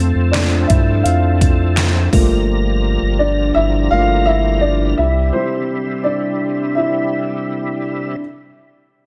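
Piano-driven pop in C major at 84 BPM, this anthemic, warm excerpt features a dark, woody upright piano that carries a solo across the full 8.2 seconds over chords moving from F to Gm7 to C. A gritty, overdriven tonewheel organ with key click, chorus vibrato and slow rotary speaker holds sustained chords underneath, while a round, deep analog bass sits up front until 5.3 seconds. A layered electronic pop kit with knocking kick, deep snare, metallic hats and handclaps appears only briefly from 0.3 to 2.3 seconds, all set in light reverb and digital ambience.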